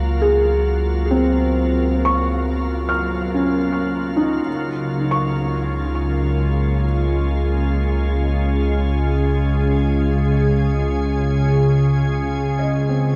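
A soft, organ-like pad and a round, deep analog bass open this ambient piece together, with the pad fading in over chorused, sustained chords while the bass holds a low Db. At 0.2 s a felt-muted upright piano joins with mellow, intimate arpeggios that carry a trail of delay above the pad. The music floats in free time in Db major, tuned to A4 = 439 Hz, moving from Gbmaj7/Db to Db at 4.5 s. The pad sits bright and up front with a pure, sine-like tone, long release and its own reverb, while the bass and piano stay further back. The dark, warm production is drenched in a huge reverb, giving a peaceful, suspended mood before the sound fades out from 10.4 s to the end of this cut from a longer piece.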